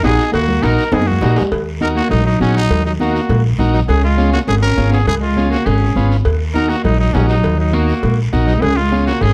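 A dark, roomy studio mix carries this fiery, danceable cumbia excerpt in Eb minor. A growling, gritty solo trumpet with plate reverb leads over a slightly broken-up electric guitar second line and a buzzy vintage combo organ with light vibrato. Underneath sit a woody pizzicato upright bass up front, ringing cowbell and timbales, hard-hand congas and a raspy guiro in the background, with a drum fill at 0.9 seconds.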